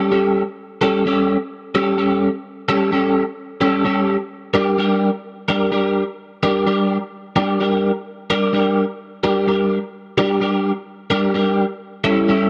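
Hypnotic and mysterious, this short rock excerpt moves at 128 BPM in a straight 4/4, with a lone twelve-string electric guitar carrying everything from start to finish. The guitar sits up front, bright, clean and twangy, with picked, compressed notes running through a rotary speaker between G3 and Bb4. It circles from A7 to Gm and back to A7 at 11.8 seconds, all bathed in a moderate spring reverb.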